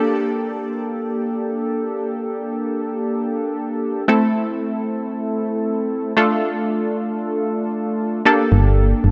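Bittersweet yet energetic, this dance-pop excerpt in free time is carried by a funky, detuned sawtooth polysynth comp with a plucky filter snap and chorus, moving from Gmadd9 through Am and Dm/A before a punchy, dark FM bass enters at 8.5 seconds under light reverb.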